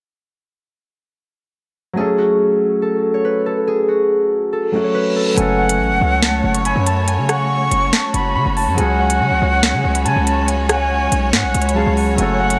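A felt-muted upright piano opens this dark, menacing half-time drill excerpt, soft and intimate with its action noise audible, and a ringing, fingerpicked concert harp takes the melody almost at once. A brief electronic reverse cymbal leads into the fuller section at 5.4 s, where a sharp, crisp drill kit and a punchy, heavy 808 bass sit up front beneath focused, biting bowed strings and an airy, unsteady silver flute second line carried by digital delay. The piece sits in a moderately lush hall reverb with a touch of small-room ambience.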